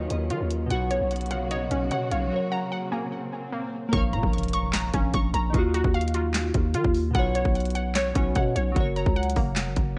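A menacing, hard-hitting trap excerpt opens with a dense bed of sound: a crystalline, detuned wavetable pluck spinning arpeggios through chorus and digital delay, glassy digital keys, a growling, buzzy 808-style bass, a distant, lush bowed string section with vibrato and portamento, and a dark, lo-fi, warbly pluck carrying a second line. The electronic drum kit, with its hard-clipped kick, sharp snare, bright hats and handclaps, sits up front in a half-time feel alongside the bass and the arpeggiated pluck. The dusty pluck drops out after 3.1 seconds and the strings soon after, while a very quiet electronic swell and impact bridge into a new section at 3.9 seconds. From there the keys, bass, drums and wavetable pluck drive a dark minor progression through to the end. Light reverb and a worn cassette-tape character, with warbling pitch drift and muffled highs, give the whole piece a gritty, aged sheen.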